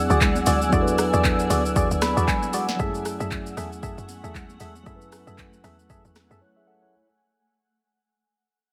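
Up-front electronic drums with a deep kick and sharp snare drive this late-night, deep amapiano excerpt in F# minor at 116 BPM with a swung 16th feel, joined by a tight, punchy log drum bass, a hollow organ stab treated with chorus and tape echo, a mellow tine electric piano that plays a fill at 1.8 seconds, a cloudy, blurred granular pad, and ringing, high-tuned congas in the background, moving from E9 to F#m9 at 2.8 seconds and fading out through a short break at 6.4 seconds.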